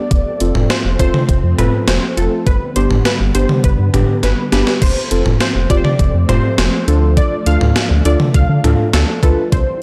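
A gated 80s digital drum machine sits up front in this wistful, nostalgic synth-pop excerpt, its thumpy kick and overdriven, sampler-style snare carrying a big gated reverb, with hi-hat, toms and crash cymbal filling out the kit and a drum fill from 4.2 to 4.8 seconds leading into the second half. Underneath, a round analog bass anchors the straight 4/4 feel with deep, sustained, dark notes. A funky polysynth comp carries the melody with a punchy, nasal, detuned tone, a filter pluck and a mellow chorus. Muted, felt-like synth keys add an intimate, decaying accompaniment, while a silky string machine holds vintage, evolving chords in the background through an ensemble chorus. The harmony moves from F to G, then back to F and on to D minor, and the whole mix has a dry, gritty hardware character with transformer saturation and a light digital ambience.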